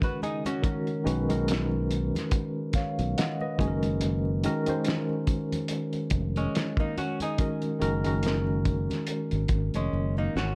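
Sensual and soulful, this short excerpt of slow R&B with a neo-soul lean moves at 71 BPM in 4/4, its sixteenths carrying a light swing. A worn, slightly out-of-tune tine electric piano sits up front, pulsing with medium tremolo through a combo amp and bathed in plate reverb as it lays down the Bmaj9 and F#add9 chords. A dark, clean archtop guitar, picked on a hollow-body and also touched with plate reverb, adds a quieter second line alongside it. The cloth-damped drum kit sounds muffled and gritty, with a fat snare, a tight kick and a rolled-off top, while very quiet congas with thick skins and soft hands sit close underneath, and a bright, growly fingered bass enters at 1.1 seconds with a punchy, up-front tone. A drum fill from 9.9 seconds closes the passage, all set in a small room within a dark, warm production.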